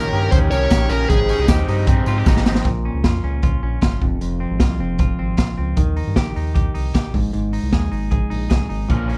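Bright and youthful, this excerpt of jangly indie pop at 154 BPM in Ab major opens with a distorted, bluesy lead guitar melody that drops out at 1.5 seconds, over overdriven garage guitar accompaniment, a hollow, flute-like pad in the background and a faint jingly tambourine, while clean semi-hollow guitar arpeggios with tape echo, a round analog bass and a gritty, up-front garage drum kit with a boomy kick and dark cymbals carry on through a drum fill at 2.3 seconds into a new section, all in a dry, small-room sound.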